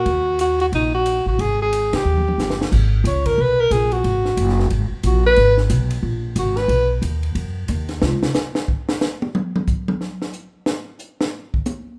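A smoky, late-night small-group swing and bop jazz fragment in G# minor opens with a breathy, subtone alto saxophone carrying the melody with vibrato and scooped notes over a woody, thumpy pizzicato upright bass on gut strings, while a compact cocktail kit with dark cymbals, a high-tuned snare and a punchy kick swings at 181 BPM, the band hitting an accent and a drum fill before the saxophone solo takes over at 2.7 seconds and the drums step forward for their own solo from 8.0 seconds, all captured live in one room with a moderate large-studio reverb.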